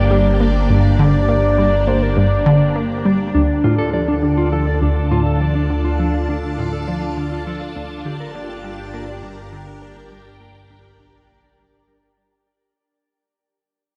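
Opening on a horn-like synth lead over swirling phased string-machine chords, a round analog pluck riff, a fat, nasal bass and a faint bubbling stepped-filter texture, this expansive, cosmic 102 BPM space-music excerpt moves from G minor to D minor as a dark, clean electric guitar takes up arpeggios with tape echo at 3.3 s, the whole fading out in a vast, echoing reverb.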